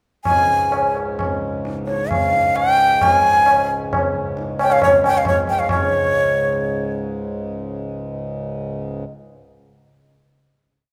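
A breathy, bright bansuri opens the piece at 0.2 s, its bamboo tone soft in attack and close-miked, carrying a slightly unsteady composed line and improvisation within a rhythmic cycle in Db major. Almost at once, a pedal harmonium settles in low beneath it with a reedy, mellow drone, and a high-tuned tabla with a short ring keeps a six-beat cycle in 3/4. This brief Hindustani classical piece feels devotional and meditative, moving at 129 to 145 BPM with a straight feel and gathering speed as it goes. The music builds as a climax from the start until the bansuri and harmonium settle onto a final chord at 5.7 s; the tabla stops at 5.9 s, and the drone ends at 9.0 s. A moderate concert hall reverb surrounds the sound, and the bansuri sits up front.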